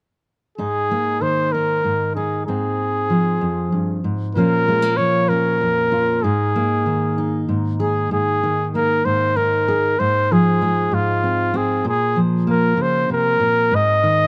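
A mellow trumpet carries the melody up front, played in a classical style with a light vibrato and a slapback echo that gives each phrase a short, close repeat. Beneath it, a fingerpicked steel-string dreadnought guitar supplies the accompaniment, its old strings lending a dark, woody, full-bodied tone. This is indie folk with a building arrangement, unhurried at 64 BPM in a steady 6/8 and set in Ab major, with a warm, hopeful mood. Both instruments enter together at 0.6 seconds and play through to 14.3 seconds, with the harmony moving from Absus2 through Fm/Ab and Bbm, cycling back, and coming to rest on Ab5. The sound is dry and open, captured outdoors with little reverb, so the two parts sit intimately close to the listener in this short portion of a longer piece.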